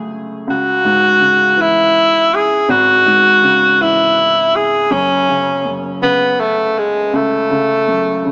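Heard through a small-speaker tone washed in a moderate echo-chamber reverb, this brief, dramatic and aching pop excerpt in F# minor moves in a slow 6/8 at 54 BPM (dotted quarters), with a roomy, up-front tenor saxophone carrying the solo melody with light vibrato and a digital delay over a warm, natural baby grand piano accompaniment, as the harmony shifts from C#m to F#m at 4.9 seconds.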